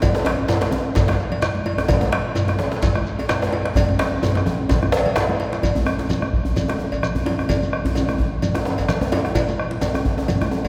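Festive and powerful, this West African drum ensemble excerpt drives along at 129 BPM in 4/4 with a swung sixteenth-note feel, the deep, dark bombo up front beside a warm, deep djembe with metal rattles, while a second, vintage and band-limited djembe joins them. Bright, thin-skinned congas sit close, while a saturated metallic cowbell and a grainy shekere stay in the background. A drum fill from 3.8 to 5.6 seconds bridges the repeated section, and a long church reverb gives the ensemble a resonant, hall-like sound.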